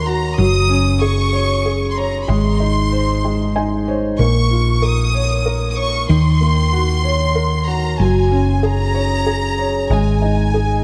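Dramatic and aching, this short excerpt of a six-eight pop ballad moves at 63 BPM in a straight 6/8 feel, with a round, punchy hollow-body electric bass up front beneath a soft, felt-muted upright piano bathed in lush chorus that adds a fill from 3.2 to 4.2 seconds, while a sul tasto chamber violin section with light vibrato carries a high second line through tape echo, all drifting over chords from Gbsus2 through Ab, Bbm and Ebm7 in a dreamy mix soaked in plate reverb.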